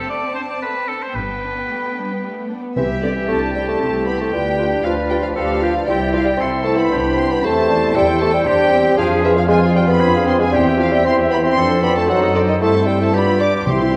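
Graceful and lively, this quick classical-period orchestral movement in triple time opens with con sordino violin sections carrying the melody and a second line beside a clear oboe and veiled violas, with muted cellos and double basses entering at 1.2 s, and at 2.8 s an airy flute ensemble, a distant clarinet, a dark bassoon, a very quiet mellow horn section and hard-mallet timpani join within a wet concert-hall reverb.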